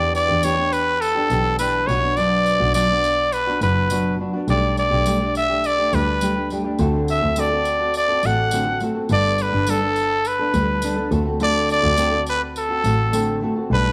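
A straight 4/4 pulse at 104 BPM carries this easy-going, sunny acoustic pop excerpt in D major, cut from a longer piece. Up front, a solo growling trumpet sings the melody between A4 and F#5 with a bright, raspy, gritty tone, punchy attacks, vibrato and scooped notes. Beneath it, a dark nylon-string guitar is fingerpicked in a classical manner, while a single bowed double bass, close and warm, adds vibrato and portamento to an expressive low line. A jingly tambourine, close and dry, keeps time from 0.1 s to 13.3 s, sitting well behind the other parts. The harmony moves from Em7 through Bm and Gadd9/B to D7, then Gadd9 and back to D7, all within a moderate echo chamber reverb with a small-room character.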